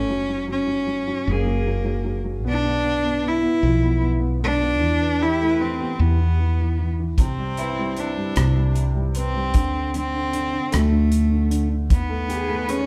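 A rich, bowed cello sings a melancholic, heartbroken melody over felt-muted upright piano with audible action noise and a round, woody fretless bass in this slow 6/8 acoustic folk-pop ballad excerpt at 51 BPM, as a twangy, slightly broken-up electric guitar with tremolo enters with arpeggios at 1.3 s and a natural country kit with punchy kick, hi-hat and rim click joins at 7.2 s, all set back in a large studio reverb over chords moving from F# through Cmaj7 to B7/D#.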